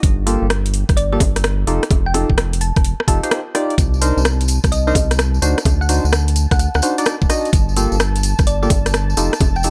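UK garage in a two-step style, this soulful, skippy excerpt rides a swung sixteenth-note groove over jazzy ninth chords such as Gm9, F9 and Cm9, with a tense D7b9 along the way. An overdriven, knocking electronic kick and a layered garage kit of bongos, metallic hi-hats and rim clicks carry the beat, joined by a rubbery, bouncy square-wave bass that sits dark and up front. A hollow, percussive organ stab with subtle chorus and digital delay punctuates the chords from the opening moments. At 1.0 seconds a round, tine-like synth pluck takes the melody, its gentle FM tone colored by chorus, phaser and delay. The kick drops out briefly at 3.3 seconds, and at 3.8 seconds a jingly tambourine enters alongside a smooth, vintage analog pad that warbles in the background with sidechain pumping. The whole groove sits in a digital ambience.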